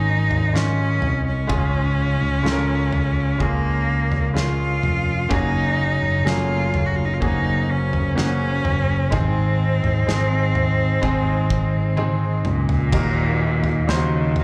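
A clear, bowed cello carries the melody from the first moment, its focused solo tone sitting up front with a touch of vibrato and a slapback echo. Beneath it, a brilliant concert grand piano with deep bass and short sustain supplies the accompaniment. A mellow French horn section holds tight, classical-style chords in the background, and a growly, amped fretless electric bass sits prominently under everything. A loose indie drum kit enters at 0.3 seconds, with a punchy kick, a medium-tuned snare and dark cymbals, all heard in a pumping room with a rolled-off top. This emotional, hopeful pop ballad is cut from a longer piece and has the feel of a live club gig heard through the venue's PA. A drum fill from 12.0 seconds leads into a new section at 12.9 seconds, where the harmony turns to a minor chord.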